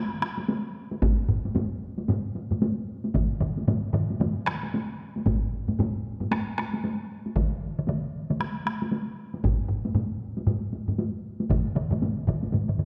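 A driving 4/4 pulse at 115 BPM with a 16th-note swing opens this powerful Japanese traditional taiko excerpt, which speeds up throughout its 12.8 seconds. A solo taiko drum and one taiko ensemble enter at 0.2 s, joined by two more ensembles at 1.0 s, all struck with heavy sticks and placed up front, most of them close and dry while one sits in a small room. The whole is bathed in a wet scoring-stage reverb and given a dark, warm production.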